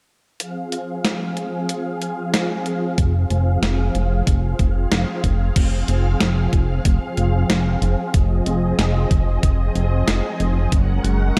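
A silky, nasal analog string pad with ensemble chorus, sidechain pumping and a filter sweep opens over a clean 12-bit digital drum machine's crash, hi-hat and medium-tuned snare, before a glossy, up-front chorused synth bass and a thumpy electronic kick arrive at 3.0 s in this nocturnal, cinematic synthwave excerpt at 93 BPM in F phrygian, moving from F minor to G-flat add9 at 10.7 s within a dark production carrying light reverb.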